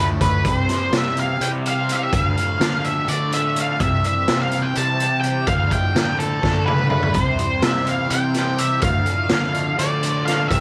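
Lurching along in a straight 7/8, this trippy, mysterious psychedelic rock excerpt rides on a raw garage drum kit that kicks in at 0.2 s, up front, gritty and saturated with a punchy kick and a rolled-off top, and breaks into a fill at 6.4 s. A double-tracked, compressed fuzz guitar riff with phaser and an overdriven fuzz fingered electric bass with tube saturation churn between C and D minor, while a silky, very quiet string machine holds slow-attack chords beneath. Over it all, a dark octave-fuzz lead guitar sings the melody up front through tape echo, all within a small room ambience.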